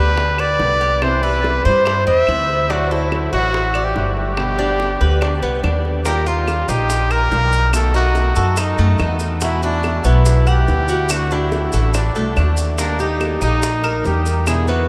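A trumpet with light vibrato sings the melody up front over a thumpy, dark pizzicato upright bass, metallic double-stringed tres arpeggios and a boxy fingerpicked swing-style acoustic guitar in the background, while tight, high-tuned bongos and woody claves slip in at 0.2 and 0.4 seconds and grainy maracas join at 6.1 seconds, giving this sunny, danceable fragment of Cuban son and guajira, set in a vast, echoing space with huge reverb, its lift.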